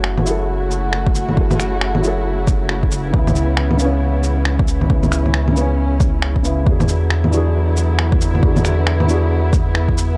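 Melancholic and wistful, this short future garage excerpt sets a soft, felt-muted upright piano and distant, dark bowed chamber strings pumping over a deep, round sub bass, while muffled, pitched-down finger snaps, bongos and shaker crackle with overdrive and a punchy, up-front electronic kick joins at 1.1 seconds, all through a dry, gritty cassette-tape sound as the chords move from F#m9 to C#m7 to E9.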